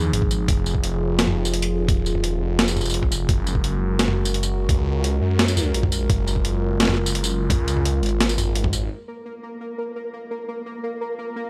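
Half-time drum and bass with a spacious, cinematic mood, opening straight into a drop where a dark, detuned analog pad with chorus and sidechain pumping holds sustained chords beneath an up-front, swirling saw bass thickened by a phaser. Gritty, pitched-down sampler-style drums drive the drop: a thumpy electronic kick and a compressed kit with a high-tuned snare, hi-hat, tambourine and toms, set in a small room. Just before 9 s the drums and bass drop away, and at 9.0 s a bright, pulsing gated texture with chorus and reverb joins the pad, all captured in a dry, gritty hardware sound as this cut from a longer piece closes.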